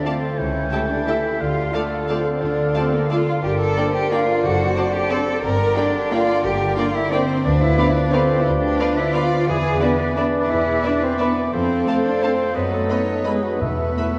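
Classical orchestral ballroom waltz in D minor at 177 BPM, sweeping and bittersweet, with uneven, rubato beats in 3/4, cut from a longer piece. A soft, sul tasto violin section carries the melody in the background over a smooth, rich cello section and a portamento double bass section, while an airy silver flute, oboe, clarinet and a second violin line add supporting lines, a distant, very quiet viola section and a vintage-toned bassoon accompany, a dark horn section holds sustained chords and a bright, ringing harp plays arpeggios. Round, soft-mallet timpani arrive only at 13.6 s on an Esus4, and the whole sits in a wet concert hall reverb with the worn, warbling pitch drift and dulled top of old cassette tape.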